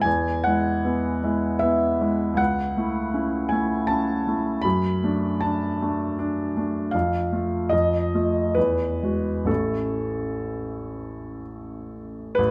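A romantic classical nocturne for solo piano, this short passage cut from a longer piece moves in a tender, dreamy triple metre with a freely breathing rubato. A bright grand piano carries the whole of it from 0.0 to 12.5 seconds, ranging from A1 up to B5 with a brilliant, open tone and long sustain that lets each chord ring. The harmony drifts from E through A/C# and D/F# before a colour shift to F around 6.9 seconds, then settles via Eadd9 back home to A near 9.5 seconds. Close, detailed microphones place the instrument up front, while a moderate recital hall reverb of 1.7 seconds gives the sound a gentle sense of space.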